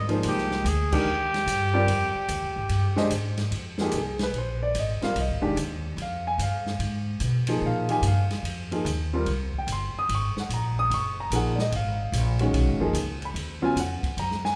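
A swung 4/4 pulse at 146 BPM drives this cool, searching modal jazz passage, cut from a longer piece, with the band landing a shared accent at 0.9 seconds. Up front, a trumpet with a warm, vintage tone and light vibrato states a brief solo melody, scooping into its notes before it drops out at 3.1 seconds. Pizzicato upright bass with steel strings gives a woody, present foundation, while a clear baby grand piano comps in short, natural-sounding chords. Further back, an acoustic jazz kit with dark cymbals, a medium-tuned snare and a boomy kick keeps time on ride, hi-hat and crash. The harmony holds on Fm11 before shifting to Abm11 at 10.1 seconds, and a wet recital-hall reverb gives the whole ensemble a spacious, churchlike air.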